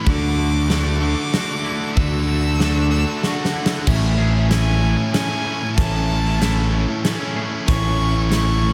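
A growly, fuzz-soaked fingered electric bass sits up front in this hopeful, euphoric post-rock passage in 3/4, cut from a longer piece. Above it, a rich bowed violin carries the melody high in its range, singing with expressive vibrato and portamento through a digital delay. Two overdriven, picked electric guitars drive bright riffs, one from a cranked stack set further back, while a clean, twangy, scooped guitar weaves delayed arpeggios in the background and a very quiet, glassy FM pad with a slow attack and ethereal chorus enters at 0.9 seconds. A big acoustic rock kit with a fat snare, punchy kick, hi-hat and crash rings in a bright stone room. The opening builds toward a drum fill from 3.2 seconds, and at 3.9 seconds the harmony shifts from Dadd9 to Amaj7, all set in a small room ambience.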